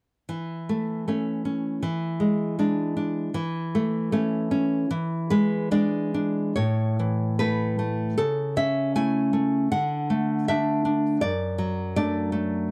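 A solo nylon-string guitar opens at 0.3 seconds with a tender, romantic classical piece in A major, its full-bodied, fingerpicked tone sitting up front in a dry, close 1970s-style studio recording with small room ambience. The rubato phrasing in 2/4 drifts between 66 and 81 BPM, first rocking between A over E and E7, then moving at 6.6 seconds into a second section that passes from A through A over C# to D and D over F#. The playing spans from a low F#2 to a high G#5 in this warm excerpt cut from a longer piece, ending at 12.7 seconds.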